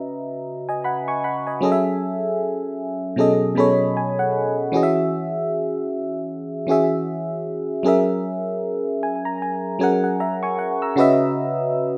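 Light reverb and a rough home-demo mix frame this short, smooth, late-night R&B fragment, cut from a longer piece. A lone FM electric piano plays throughout, sitting up front with a glassy, bell-like attack, a noise layer and decaying tones, while chorus gives it a warbling, vintage shimmer and a slapback echo trails each note. Set in 4/4 with a swung sixteenth-note feel, the piano ranges from B2 to E6 over lush extended harmony: C#m11, F#m9, B13, E69 and F#7, before returning to C#m11. Fills arrive from 3.2 to 4.7 seconds and again from 8.6 to 11.0 seconds, just before a brief new section begins at 11.0 seconds. The tuning sits slightly sharp of standard pitch, at A4 = 441 Hz.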